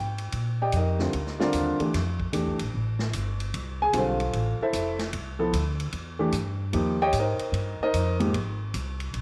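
A dark, mellow concert grand and a woody, thumpy upright bass open this brief modal jazz excerpt together, both sitting up front with a searching, spiritual mood. The swinging big-band drum kit joins at 0.2 seconds, its hi-hat, ride cymbal, medium-tuned snare and punchy kick captured naturally in a big room and set well behind the other two. The intimate piano carries the accompaniment with deep bass and audible action noise, moving through rich ninth and six-nine chords in a smooth, vintage tone. The plucked bass, strung with steel, anchors the low end beneath the swung eighths. A wet spring reverb colours the recording, and the piano drops out at 8.3 seconds, leaving bass and drums to finish the fragment at 9.2 seconds.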